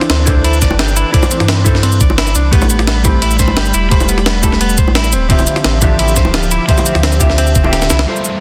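A dense, heavily limited modern master with light reverb and digital ambience frames this short, dreamy excerpt of liquid drum and bass at 173 BPM in 4/4, set in D dorian. Gritty, tape-warm breakbeat drums, sampler-style and pitched up with a medium-tuned snare, cabasa, hi-hat and ride cymbal, ride over a thumpy, compressed electronic kick, both carrying the character of a small room. A deep, round sine sub bass holds the low end, while low-tuned bongos played with soft hands sit in the background. A dark, clean hollow-body jazz guitar plays accompaniment through a low-pass filter and dub echo, and a fingered semi-hollow electric guitar adds arpeggios with its own dub echo. Behind them a thick, airy detuned sawtooth pad with chorus and phaser sustains chords moving from C69/G to Am9 and then Dm11 at 5.3 seconds, before a drum fill at 7.7 seconds and a brief electronic downlifter at 8.1 seconds.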